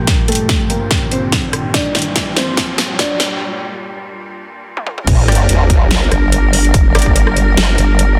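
A dense, heavily limited mix with light reverb opens on a soft, felt-muted upright piano playing a dark, boxy melody through a digital delay, over lush bowed strings that pump against the sidechain and a very quiet, breathy pad, all resting on G minor. This is a menacing, heavy stretch of wobble dubstep at 144 BPM in a half-time feel with a slight swing, cut from a longer piece. A punchy electronic kick and a tape-warm dubstep kit with metallic hats and a huge, clipped snare drive the build-up with fills, while a riser and sub drop sit in the background. The piano stops at 3.4 seconds for a short break, and at 5.1 seconds the drop lands with an impact and a growling, overdriven bass up front on G. Bright, detuned orchestra-hit-like synth stabs flash in the background, and from 6.1 seconds a nasal, resonant vowel-sweep wobble bass joins the growl in the low end, moving between F and G.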